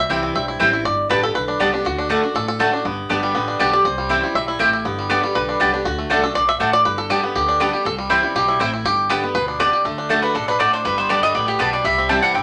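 Virtuosic and joyful, this bluegrass excerpt in G major races at 240 BPM as a bright, twangy, percussive banjo played with fingerpicks carries the solo melody until 9.9 s over a full-bodied dreadnought guitar with audible finger squeak, round double-string mandolin stabs and a dark, thumpy gut-string upright bass, before a second, woody mandolin steps up front with the melody at 10.2 s, the whole performance heard in a wet studio reverb.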